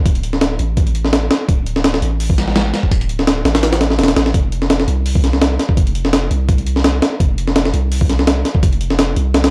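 Drum and bass with a jungle edge, dark and frenetic, built on a compressed, gritty sampler-style breakbeat kit of thumpy kick, high-tuned snare and hi-hat sitting up front with a small-room character, over a deep, mellow, sine-like 808-style bass whose long notes strike quickly and decay, all in a dry hardware-recorded sound with light reverb, cut from a longer piece.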